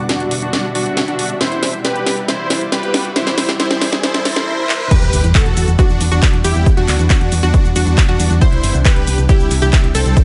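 A shimmering, ethereal pad opens this emotional, driving uplifting trance excerpt, joined by a huge, detuned supersaw melody under a filter sweep and a techno kit of cracking snare, metallic hats, handclaps, shaker and crash, while background riser and swell effects build to the drop at 4.9 s, where an impact lands alongside a punchy, up-front kick, a dark, solid FM bass and a full-bodied analog pluck second line, the bass and pluck both pumping from sidechain compression.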